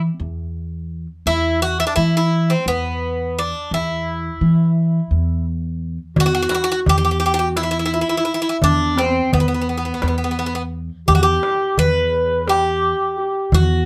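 A moderate small-room reverb gives this short cut from a longer piece a close, intimate sound, with the bass and bouzouki set up front. It is a melancholic, hypnotic Turkish makam ensemble piece in E makam nihavent, moving at 171 BPM in eighths in a straight 7/8. A woody, thumpy pizzicato upright bass opens alone at 0.0 seconds, dark on its steel strings, and a bright, metallic bouzouki enters at 1.3 seconds to carry the picked melody on double strings, some of them octave-doubled. At 6.2 seconds the music moves into a new section as a growling clarinet takes a jazz-style second line, raspy and gritty with vibrato and scooped notes yet smooth at the top. A crisp, small metal-shell darbuka arrives at the same moment, its high, acoustic sound carrying a live-room feel. The bouzouki and clarinet share the same register while the bass stays low beneath them.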